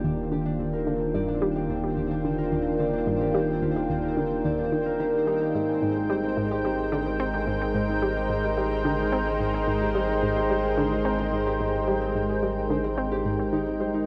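Ambient, sequencer-driven space music with a cosmic, luminous mood, cut from a longer piece and moving in a straight 4/4. Up front, a lush unison pad holds sustained chords, thick and warbling with a vintage, detuned character, shifting from Ebmaj7 to Abmaj7 at 5.5 seconds. An analog pluck plays a riff in the low-mid register, round and slightly nasal with a fast attack and short decay, treated with chorus and delay. In the background, a mellow concert harp rings out fingerpicked arpeggios through its own delay, while a deep sine sub bass sustains underneath. A very quiet pulsing gated texture, tempo-synced and detuned, enters at 0.1 seconds, and a lush hall reverb bathes the mix in a long, wet tail.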